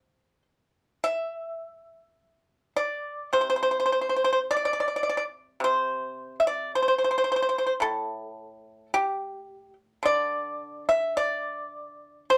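Serene and pastoral, this brief excerpt of Chinese traditional solo plucked-string music features a lone pipa, played with fingerpicks and set up front, its dry, percussive attack moving in a free, rubato feel across a range from A2 to E5 for 12.4 seconds within a dark production touched by light reverb.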